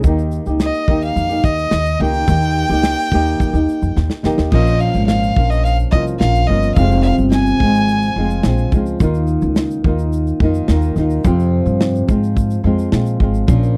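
A clear, biting violin with vibrato carries a tender, reflective melody with slapback echo from 0.6 to 8.7 seconds over a thumb-plucked flamenco guitar with finger squeak, a woody, thumpy pizzicato upright bass and a punchy studio drum kit with bright cymbals, shaker and a fill at 4.0 seconds, in this dry, close 1970s-style acoustic pop passage in F minor at 107 BPM.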